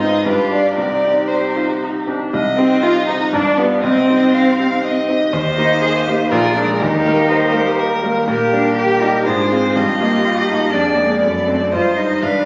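A bright, brilliant vintage grand piano sits up front with long sustain beside a smooth, warm-toned first violin singing the melody over vibrato in this dramatic, urgent passage from a quick classical-period piano quintet movement in C minor at 121 BPM in 3/4. A focused, distant second violin and an expressive cello with portamento carry second lines, while a rich viola sliding between notes stays in the background. The harmony moves through C minor and E-flat major before settling on C minor, all heard through a phone in a wet recital hall with added studio reverb and compression.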